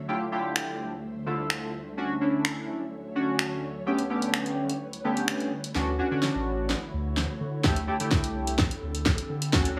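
A glossy, retro polysynth sits up front in this euphoric, carefree dance-pop excerpt at 127 BPM in D major, its pulse-wave and sawtooth chords carrying a filter sweep and chorus while pumping with the beat. Behind it, an ethereal, airy pad of detuned unison sawtooth and triangle tones holds long sustained chords with a slow attack, ensemble chorus and its own reverb, also pumping in time. A punchy, layered electronic pop drum kit enters at 0.6 seconds with kick, fat snare, hi-hat and finger snaps, sounding close and re-recorded in a small room. At 5.8 seconds a deep, round sine sub bass joins as the music moves into a build-up with a drum fill that runs to the end at 9.8 seconds. The harmony moves through Fmaj9/D, Dmaj7 and A9/D before settling on Dmaj7 and C69, all set in light reverb.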